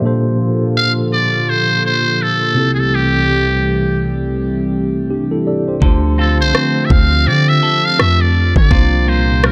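Dry, with little reverb, this excerpt of contemporary R&B carries a longing, sensual mood over a lightly swung groove. From the start a mellow tine electric piano plays the accompaniment while a hollow, flute-like pad with chorus holds sustained chords, the pad sounding soft and dark. At 0.8 seconds a trumpet with a metal mute takes the melody up front, its buzzy, raspy tone with a vintage growl trailed by tape echo. From 5.8 seconds the groove fills in: a deep, boomy 808-style bass with a fast attack, an electronic drum kit with a knocking kick and rim click, and a clean electric guitar playing bright, twangy arpeggios with a warbly pitch drift. The harmony moves from Bbmaj7 to Am7/C, then Dm7, and closes on C7sus4.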